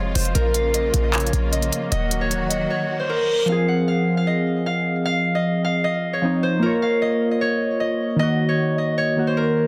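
A ringing, fingerpicked concert harp carries the melody across this brooding, hard-hitting trap excerpt, its acoustic tone placed up front and trailed by a digital delay. At the start it sits over veiled, con sordino strings holding lush bowed chords with vibrato, while a punchy, tight 808-style bass with a noisy edge and a crisp electronic drum kit of handclaps and hi-hats hit hard in a half-time feel. The drums and bass drop out at 2.7 seconds, and a reverse cymbal rises in at 2.9 seconds to lead into the next section. From 3.5 seconds, the strings give way to warbling lo-fi synth keys, nostalgic and detuned, with ring modulation, a filter sweep and chorus colouring their warm accompaniment beside the harp. The harmony moves through Bbm, Ebm and Fm in a small, moderately reverberant room, and the dense, heavily limited master keeps the sound loud and modern.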